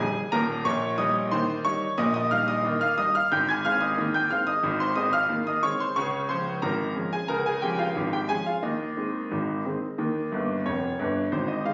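Captured on a phone in a studio room with a moderate studio ambience, this short, lively and jaunty ragtime piece in 2/4 features a clear, worn grand piano placed up front, playing solo across a broad span from Eb1 to Ab6 over a straight feel, moving through chords like Eb7/Bb, Ab and Db before a brief fill at 10.3 seconds as the fragment, cut from a longer piece, closes on Eb.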